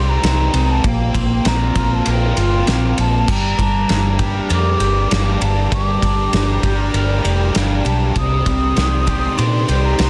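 Shoegaze-tinged dream pop rock at 98 BPM in G minor, this dreamy, hazy excerpt sets a breathy, distant flute melody with slapback echo over shimmering, octave-doubled twelve-string acoustic arpeggios drenched in lush chorus, while a thick fuzz guitar riff with analog chorus and a twangy, scooped electric guitar riff bathed in reverse reverb sit beneath it. A round, foam-muted vintage bass sits up front alongside a loose indie drum kit, entering at 0.2 seconds with a fat snare, punchy kick and dark crash and ride cymbals in a pumping studio room. The chords move from Cmadd9 through Bbsus2 to Gm and back to Cmadd9, and at 4.4 seconds an ethereal, airy pad with slow attack, ensemble chorus and built-in reverb drifts in behind them, all captured in a small room and given a dense, heavily limited modern master.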